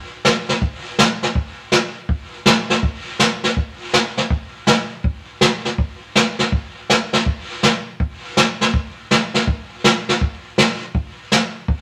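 A jazz brush drum kit carries this short country excerpt on its own, its brushed snare, hi-hat, kick drum and snare drum sitting up front from 0.2 seconds through to the close at 11.8 seconds. The tempo is a brisk 163 BPM in 4/4, with a 64% swing on the eighth notes that gives the groove a down-home, swinging feel. The kit sounds acoustic and natural, as if captured in a small room, with a medium-tuned snare and a boomy kick. Brushes shape the character of the playing. A moderate studio reverb adds a touch of space around the drums, and the whole passage holds to a single section cut from a longer piece.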